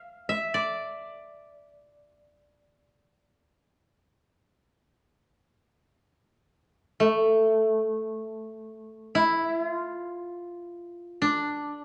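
Rubato and unhurried around 51-59 BPM in 4/4, this brief meditative, solitary fragment of Japanese traditional music in D minor features a solo koto, plucked with fingerpicks and sounding woody and up front, ranging from A3 to F5 and shifting into a new section at 7.0 seconds, set in a moderate recital-hall reverb and colored by the worn, warbling pitch drift of old cassette tape.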